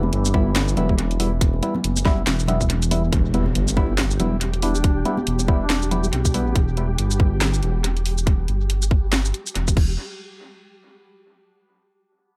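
A lightly reverberant, echo-heavy mix opens this heavy, meditative deep dubstep excerpt in E minor at 140 BPM with a swung half-time feel, where a deep, rumbling detuned saw bass and an overdriven, tight electronic kick sit up front beside a garage kit with a cracking snare, crash, handclaps, hi-hat and shaker, background congas in dub echo, hollow phased organ stabs, and a very quiet resonant drone that ends by 3.2 seconds, before the kick drops out at 2.7 seconds, a faint impact lands at 3.1 seconds as a filter sweep begins on the bass, and a flickering grainy texture and a mellow, scooping folk-style duduk in dub echo drift in over the E minor chord.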